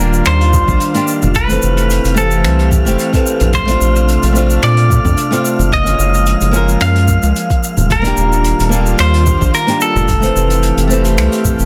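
This sunset chillout excerpt has a sunny, smooth mood, with a round, deep analog bass sitting up front beneath fingerpicked flamenco guitar with delay and an airy, breathy pad with chorus moving through lush major-ninth chords. A bright, clean semi-hollow electric guitar carries the melody from 0.3 seconds, while a jazz brush kit with finger snaps, hi-hat and shaker, a soft electronic kick and very quiet, low-tuned congas supply a gently swung groove. A mellow, wind-like tuned noise texture hovers in the background, and the mix has light small-room ambience and a dense, heavily limited modern master.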